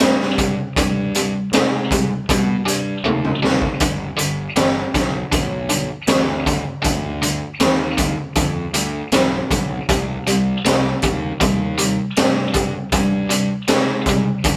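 A slow, straight 4/4 groove at 79 BPM drives this brooding, heavy blues rock and southern rock excerpt in C harmonic minor, where a biting, bright, double-tracked overdriven guitar riff in the low register sits over a dark, round fuzz bass and a raw, punchy garage drum kit with a high-tuned snare, gritty saturation and a rolled-off top, all played live in one room with light reverb, as a drum fill at 3.0 seconds leads the chords from Cm to G and back to Cm at 9.9 seconds.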